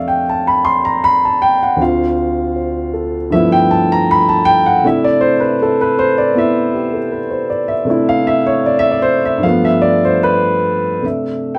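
An up-front, dark and mellow baby grand piano with long sustain rings in a moderate small-room reverb, playing a playful, warm solo jazz passage in 4/4 with a loose swing and rubato feel, moving through F69, Dm7, G13 and C69, then reaching a G9 at 9.4 seconds and returning to C69 at 11.0 seconds in this short cut from a longer piece.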